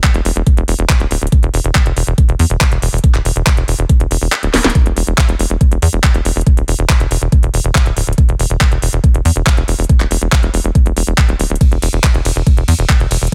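Opening straight away on a knocking, up-front electronic kick, a layered garage kit of cracking snare, metallic hats, ride and handclaps, and a tight sawtooth-and-square sequencer bass with a fast-attack filter pluck and moving notch, this driving, intense psychedelic trance excerpt stays dry and close, with the kick dropping out around 4.3 seconds as a drum fill lands at 4.5 seconds.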